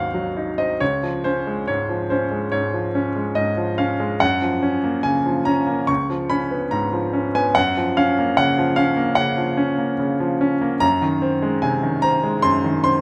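The rhythm moves in a loose four-beat metre, with uneven beats and a rubato feel that lets the pulse breathe and lean. This is a romantic classical character piece for solo piano, passionate in mood and cut from a longer work. A bright baby grand carries everything from 0.0 to 13.0 seconds, ranging from deep bass down at Ab1 up to Db6. The instrument sounds intimate and polished, with a short sustain and the clatter of its action clearly audible. Close, detailed microphones place it up front with only a light touch of reverb. The harmony drifts through rich seventh chords, settling on a Db chord at 0.8 seconds and twice visiting a Gbmaj7 before closing on Ab7 over a Gb bass.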